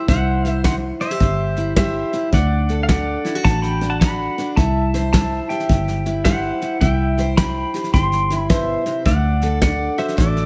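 A clean, fingerpicked pedal steel guitar sings the melody with slide and volume swells over bright, picked steel-string acoustic guitar, a dark, round, foam-muted vintage electric bass and a soft brush kit with a fat snare and punchy kick, in this sunny, down-home honky-tonk and classic country piece that swings at 107 BPM, moves between C and D, and is set back in a lightly reverberant room.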